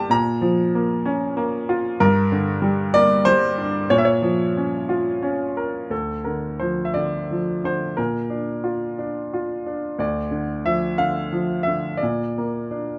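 Classical solo piano in D minor, melancholic and reflective, unfolds with rubato in 6/8 at 57-65 BPM (dotted quarters), tuned to A4 = 444 Hz, as a bright, brilliant, worn-toned grand piano sits up front in light reverb within a dark overall production, ranging from D2 to Bb5 and moving from Bbm and Gm harmonies into a second passage at 5.9 seconds that alternates Dm and Bb in this 13-second cut from a longer piece.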